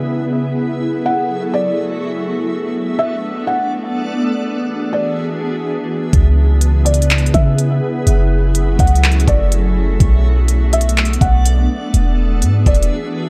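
Light reverb and a digital ambience frame this short cut from a longer atmospheric cloud-rap piece: ethereal, spacious hip hop at 124 BPM in a half-time 4/4 feel and F# minor, moving through F#m7, Bm7, E7 and C#m7. An airy, detuned pad with ensemble chorus and sidechain pumping holds sustained chords beside a reversed, granular texture that swells throughout, while a felt-muted upright piano carries a soft, intimate melody through digital delay from 1.1 seconds, its action noise audible. At 6.1 seconds a deep, boomy 808-style bass and a tape-warm R&B drum kit of knocking kick, smooth hi-hat and handclaps arrive up front, and only the pad and texture sound in the brief break from 12.9 seconds.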